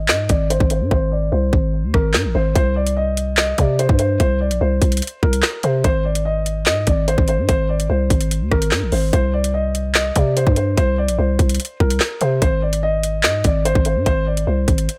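A dark, mellow concert grand piano opens this cold, tense drill piece under a filter sweep through the first 2.6 seconds, its low-passed melody sitting between Bb4 and Eb5, while a growling, buzzy 808-style bass sounds alongside it from Ab1 up to C3. The electronic drum kit enters at 0.1 seconds with a hard-clipped kick, woody snare, metallic hi-hats, handclaps and rim clicks at 146 BPM in a half-time 4/4 feel, the hats muted from 0.9 to 2.6 seconds. The harmony shifts between Ab and chordless stretches, and the dry mix keeps piano, bass and drums up front.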